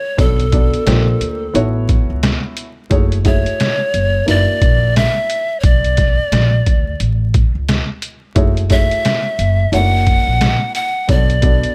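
Jazz-hop with a smoky, cool mood, moving at 88 BPM in 4/4 with a swung sixteenth-note feel in F# minor. A breathy, bamboo-toned pan flute carries the melody from the very start, close-miked and up front, with vibrato, tongued attacks and a reedy chiff. At 0.2 seconds the rest of the band enters: a dark, mellow upright piano with short sustain plays the accompaniment, while a pizzicato upright bass with steel strings adds a growly, woody low end. A gritty, compressed, pitched-down sampler-style kit sits up front, with a thumpy kick, a medium-tuned snare and hi-hat. The harmony cycles through Bm9, A#6, A6, F#m9 and F#7b13, all set in a small room reverb with vinyl crackle, in what is a cut from a longer piece.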